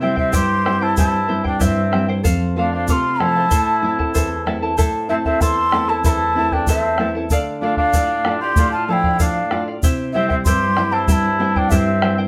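Wistful yet festive, this short cut from a longer Andean folk piece moves at 95 BPM in a straight 2/4 in A minor, with chords passing from C through F and A minor to D minor and back to C. A breathy, mellow large quena carries the melody with vibrato and a crisp, chiffy attack, while a distant oboe with light vibrato sings a soft second line beneath it. A full-bodied, up-front nylon-string guitar with audible finger squeak and a shimmering, double-strung charango are both fingerpicked, joined at 0.2 seconds by a round bombo and at 0.3 seconds by a grainy, bright egg shaker, all in a moderate studio reverb.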